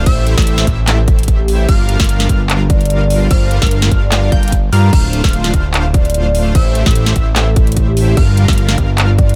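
A fat, saturated analog bass sits up front in this emotional, lush future bass excerpt. Its detuned sawtooth tone is thickened by tube saturation, shaped with a filter pluck and pumped by the sidechain. The track runs at 148 BPM in 4/4 with a half-time feel and a light 16th-note swing, in G dorian, moving through Am7, Gm7 and Dm7. A bold, bright polysynth riff with square-wave layers, a sub octave and analog chorus fills the middle. From 0.1 seconds a hard-clipped electronic kick and a trap kit drive the beat, the kit bringing a sharp snare, metallic hats, handclaps and crash cymbal. In the background, a mellow vibraphone played with soft mallets carries the melody, ringing with fast motor vibrato and delay in a boxy small room, while a punchy, high unison pluck spins arpeggios with a noise layer and a moving notch; the mix is dry and loud, and the pluck, polysynth and vibraphone all pump with the sidechain alongside the bass.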